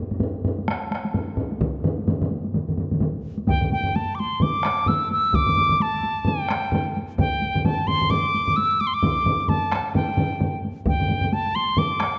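A tongued wooden piccolo with a pure tone and vibrato rides up front from 3.5 seconds over solo taiko drums played with heavy and hard sticks and two taiko ensembles, one on heavy sticks with a vintage, band-limited sound and the other on hard sticks, in a powerful, ceremonial Japanese traditional piece at 130 BPM with a swung 16th feel that speeds up throughout, all set in a wet scoring-stage reverb.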